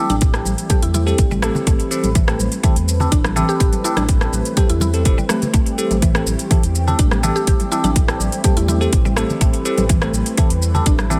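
Earthy and spiritual, this afro house excerpt rests on a sustained Am7 chord from a detuned sawtooth analog pad, joined by woody mallet-like synth pluck arpeggios trailing tape echo, bell-like tine electric piano stabs through a phaser, a smooth gliding synth bass, a house drum kit of metallic hi-hats, rim clicks and shaker, damped congas tucked in the background and a punchy, up-front electronic kick, with the pad, pluck, piano and bass all pumping from sidechain compression under a light reverb.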